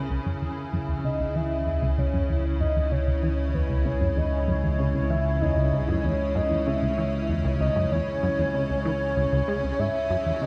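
Drenched in a wet echo-chamber reverb, this echo-heavy cut from a longer piece of ambient, sequencer-driven space music feels expansive and hypnotic, moving in a straight 4/4 over a single minor chord. A punchy, funky analog bass carries the riff from the first moment, its sawtooth and pulse-wave filter pluck decaying into tape echo and ensemble chorus while a filter sweep reshapes it throughout. Alongside it, a vintage analog drone holds one low note from 0.1 seconds, warbling with pulse-width modulation and chorus. An evolving wavetable pad sustains bright, morphing chords with a moving notch, slow attack and long release, bathed in ensemble chorus, built-in reverb and shimmer reverb. At 1.0 seconds a soft, octave-layered synth lead enters with a full, round and dark tone, its melody colored by sub-octave weight, vibrato, tremolo, chorus, shimmer reverb and tape echo.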